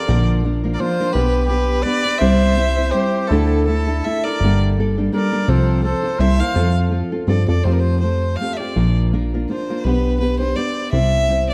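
Romantic and festive, this mariachi-flavored Mexican folk excerpt moves at 166 BPM in a swung 3/4 with a rubato feel, centered in F major. A clear, smooth violin carries the melody from the start, bowed by a single player with even vibrato and a close presence. Alongside it, a solo trumpet in a classical style plays a second line until 6.7 seconds, after which the violin carries on with the guitar and bass. A full-bodied, fingerpicked nylon-string guitar sits up front as accompaniment, while a punchy analog synth bass with a fast, decaying filter pluck and a touch of ring modulation adds a funky, mellow low end. Chords such as Bb, G/B, C, Gmadd9 and C7 give the harmony a lush color, and the whole arrangement sits in a moderate scoring-stage reverb with a dark production.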